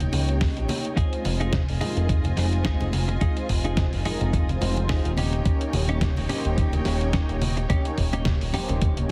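Nu-disco at 107 BPM in F minor with a cosmic, sleek mood, this short excerpt cut from a longer piece sets a fat, nasal, saturated analog bass and a thumpy electronic kick from 0.4 seconds against a smooth, detuned pad under a filter sweep with chorus and slapback echo, a rich bowed string section carrying vintage 12-bit grit and sidechain pumping, a gritty tape-toned sampler kit of hi-hat and snare, very quiet distant low-tuned congas, and a clean, lush-chorused electric guitar riff entering at 1.0 seconds, all moving over Eb7 and Fm7 in a dry, heavily compressed radio sound.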